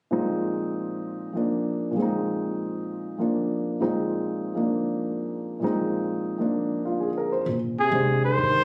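A warm, intimate grand piano with audible action noise opens this open, spiritual modal jazz excerpt at 131 BPM with a swung feel, resting on a Bb9sus4 chord, before woody pizzicato upright bass enters at 7.5 seconds and, at 7.8 seconds, an up-front breathy trumpet with light vibrato takes the melody over a dark, whispered, distant trombone line, the room caught on a phone with light club reverb.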